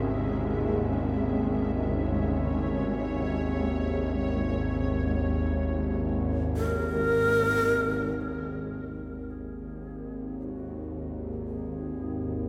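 A breathy, crisp-attacked shakuhachi with vibrato and tape echo enters close and up front at 6.6 s over a tense, detuned, string-like bowed drone and a cloudy, evolving granular pad that stops at 8.2 s, giving this free-time dark ambient excerpt a dark, cavernous mood in an echo-heavy plate reverb.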